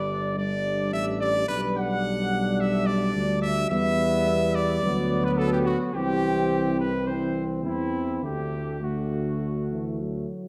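A rubato 4/4 pulse carries this stately, noble brass quintet fragment from a classical piece, where a clear, smooth trumpet sings the melody over a warm flugelhorn second line with light vibrato in the background, a vintage-toned French horn and a dark euphonium fill the accompaniment, and a mellow, roomy tuba holds the bass up front, all five sounding together for about 10 seconds in a reverberant recital hall.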